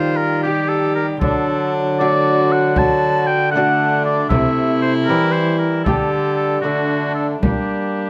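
A short cut from a rustic, solemn renaissance-style consort dance in straight 6/8 opens with an up-front, warm oboe singing the melody with light vibrato and a soft attack over a reedy gut-string viola second line, a delicate fingerpicked lute and a mellow bassoon in the background, and a nasal bowed cello bass, before a deep, saturated frame drum played with soft hands enters at 1.2 s, heard in a close, detailed recording with light reverb.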